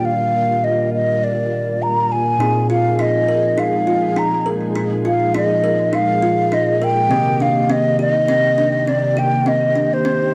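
Warm and smooth, this sunset chillout excerpt drifts at 102 BPM in 4/4 with a light sixteenth-note swing, moving from Ebmaj7 to Bb7sus4 and then Cm9. Up front, a mellow, hollow concert flute carries the melody with airy vibrato and a soft attack, roughened by vintage 12-bit sampler grit and trailed by tape echo. Beside it sits a silky string machine holding sustained chords, its slow attack, long release and ensemble chorus giving it a gently warbling, vintage glow. Further back, an overdriven tine electric piano adds barky, gritty accompaniment through a combo amp, while an electronic shaker ticks along at a barely audible level. At 2.4 seconds a woody, thumbnail-plucked kalimba enters with short, bright arpeggios that echo on tape. Cassette tape colours the whole home-recorded mix, and every pitched part sits in plate reverb within a wet studio ambience.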